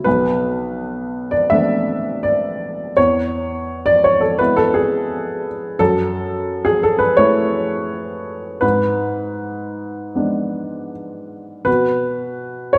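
A solo upright piano, woody and slightly detuned with audible action noise and a short sustain, plays up front through a melancholic, wistful neoclassical minimalist passage in a rubato 4/4, moving from Bm7 through E6 and F#m7 to G#dim before the chords drop away at 11.7 seconds, all set in the moderate reverb of a church or concert hall.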